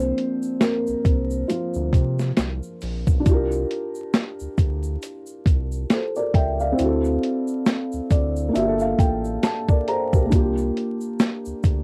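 A felt-muted upright piano carries the accompaniment in this hazy, reflective lo-fi hip hop passage, cut from a longer piece, with a boxy, mellow tone, audible action noise and a cassette-tape, low-pass haze, playing solo until 3.3 seconds and returning with a fill from 7.7 to 10.3 seconds. The tempo sits at a relaxed 68 BPM in 4/4 with a gentle swing on the sixteenths. A boom bap sampler-style kit sits up front, compressed and pitched down with a gritty cassette texture, pairing a thumpy kick with a high-tuned snare and hi-hat. Underneath, a round analog bass blends sawtooth and sine tones with ring modulation into a deep, sustained and evolving low end. A grainy egg shaker sits in the background. The harmony drifts from suspended C chords through D7 and Gm7, all wrapped in a moderate booth ambience and vinyl crackle that give it a home-taped feel.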